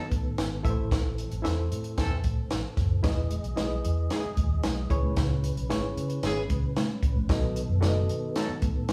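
A moderate stone-room reverb gives this short cut of uptempo 1960s-style soul the feel of a band playing live together, danceable and joyful at 113 BPM in E major. A dry, up-front cocktail drum kit with a high-tuned snare and punchy kick drives alongside a dark, foam-muted fingered bass, while a mellow tonewheel organ holds sustained chords through a slow rotary speaker and a reedy, slightly out-of-tune electric piano shimmers with fast tremolo. A distant horn section enters as a second line at 2.0 seconds, and soft-handed, thick-skinned congas join in the background at 3.0 seconds over chords moving from B7 and Am through Emaj7 and C#m7.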